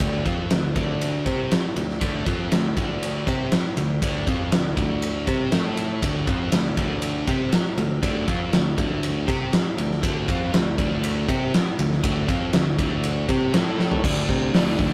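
Hard rock at 120 BPM in D minor, driving and menacing, built on a sludgy, double-tracked overdriven guitar riff over a bright, growly picked electric bass. A big, dark acoustic drum kit sits up front with a fat snare, punchy kick and rolled-off top, rolling through crash, ride, hi-hat and toms before a fill at 13.8 seconds. The dry, rough rehearsal-room sound carries tube saturation, and the chords move from Dm to A5 and back, landing on D5 at 14.0 seconds in this cut from a longer piece.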